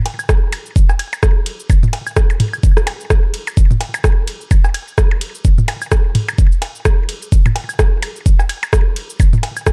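A swung 16th-note groove at 128 BPM in 4/4 drives this sparse, clinical techno excerpt, anchored by an up-front, knocking electronic kick that enters at 0.3 seconds and sits loudest in the mix. Around it, a garage drum kit of metallic hi-hats, ride cymbal, rim clicks and shaker plays from 0.1 seconds, with the layered kick and kit both re-recorded in a small room. Up-front electronic percussion blips, claves and toms are gritty with overdrive and trailed by delay, all within a dark, dry production.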